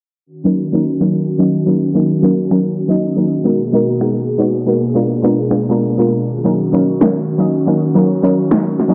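Bathed in a lush hall reverb, with a low-pass filter on the mix and a filter sweep running throughout, this emotional future bass fragment moves at 160 BPM in a half-time 4/4 feel in Eb minor: an airy, breathy chorused pad holds sustained chords from 0.3 s, a soft, round pluck with 12-bit sampler grit and digital delay carries the accompaniment, and punchy, layered electronic finger snaps and a filtered snare arrive at 1.0 s, all moving through Ebm7, Abm9 and Bb7b9 before settling back on Ebm7.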